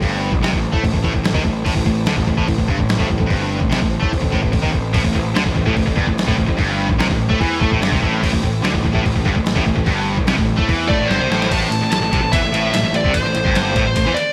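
This heavy metal excerpt opens in A minor at 146 BPM, with a gritty, pitched-down, sampler-style drum kit up front: a thumpy kick, a medium-tuned snare, crash and ride cymbals, and a gated reverb. Beneath it, a growly, punchy fuzz bass drives the low end, while two bright, picked riff guitars, one a double-tracked overdriven stack and the other high-gain distorted, sit in the background. A very quiet, distant string section holds lush, woody bowed chords with vibrato. After a brief break in the kick and snare, a third heavy high-gain guitar joins the riff at 4.9 seconds, and a drum fill at 11.1 seconds leads into a new section. A dark, distorted lead guitar carries the melody up front from 10.9 seconds, and the whole has a relentless mood and a 1980s-style digital production sheen with light reverb.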